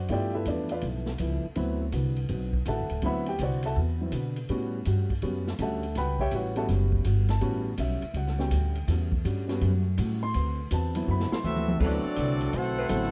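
A dry, close recording in a 1970s studio style captures this brassy, swinging big band jazz excerpt in D major at 164 BPM, where an intimate grand piano with audible action noise takes the lead over a woody, thumpy upright bass, a dark, boxy picked acoustic guitar in the background and a big-band drum kit with a punchy kick. After a drum fill from 11.1 seconds, a clear trumpet section carries the melody from 11.5 seconds with a soft-attack trombone section on a second line. A mellow, distant saxophone section adds sustained chords from 11.8 seconds before the cut.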